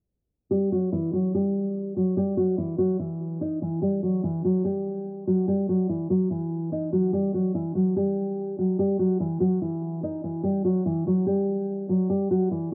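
Set to a half-time feel at 145 BPM in 4/4, this hip hop excerpt moves with a heavy, deliberate sway despite its brisk count. A fingerpicked nylon-string guitar carries the melody from 0.5 to 12.7 seconds, sitting up front with a full-bodied, deep classical tone and the warm resonance of fresh strings. Finger squeak surfaces along the way, and a cassette tape treatment gives the guitar a worn, hazy character. The harmony rests on an E minor chord with an added ninth, in E harmonic minor, lending the mood an eerie, hard-hitting tension. The home cassette recording rolls off the top end, so the sound stays dark and intimate within a studio ambience.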